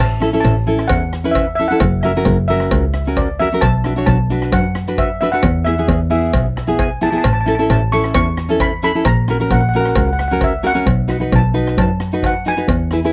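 A shimmering lead steel pan, struck with hard rubber sticks and trailed by tape echo, opens this carefree, festive calypso at 132 BPM in A major, over a clear, focused bowed double bass with vibrato. From 0.2 seconds a full-bodied, fingerpicked nylon-string guitar sits up front, joined by a polished, airy street-band drum kit with a boomy kick, hi-hat and rim click, and a close, dry cowbell from 0.4 seconds. The dry, close 1970s-style studio sound keeps the parts intimate as the chords move from A through F#7, Bm and E toward B7.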